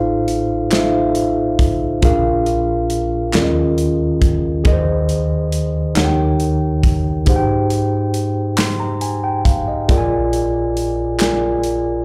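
A slow 6/8 gospel groove at 46 BPM in dotted quarters sets a jubilant yet reverent mood in Ab major, led by a mellow, up-front tine electric piano with slapback echo spanning the full 12 seconds, joined at 0.3 seconds by an airy, polished studio drum kit with a punchy kick, medium-tuned snare and hi-hat, and at 0.7 seconds by hollow group handclaps further back, all heard through a live club PA with light reverb in this short cut from a longer piece.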